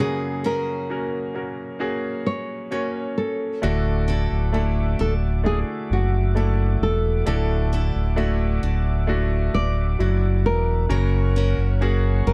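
A dark, fingerpicked nylon-string guitar carries the melody in this hopeful, emotional pop piece at 66 BPM. It sits over a brilliant, polished concert grand piano with deep bass and a picked archtop guitar whose arpeggios carry a hint of finger squeak. At 3.6 seconds, as the harmony moves from F#add9 to Dadd9, a deep, full sine sub bass with an octave arrives up front, alongside clean tonewheel organ chords turning through a slow rotary speaker, before the piece settles on F# in a dry, close 1970s-style studio sound.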